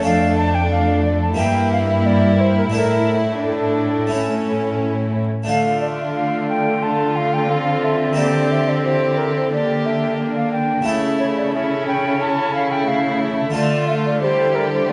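A pure, straight-toned concert flute leads the melody from the very start of this driving, dramatic baroque-style concerto passage in D minor at 89 BPM, over a dark, woody symphonic violin section in the background, a rich, expressive chamber violin section on a second line, a smooth, even chamber viola section and an airy, brilliant harpsichord with three sets of strings in the accompaniment, and an up-front chamber cello section bass with soft attack and portamento, heard in a wet recital-hall reverb and cut from a longer piece.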